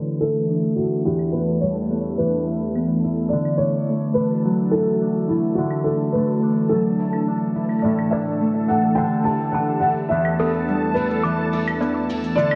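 A fingerpicked Celtic harp rings up front with filtered, tape-echoed arpeggios beside a soft, felt-muted upright piano carrying the melody with audible action noise, over a detuned sawtooth pad, a reversed granular swell, brushed cabasa, hi-hat and claves under a filter sweep, and a clanky toy piano entering at 8.1 s, in this pastoral, hopeful folktronica fragment in D major at 106 BPM, soaked in dreamy plate reverb.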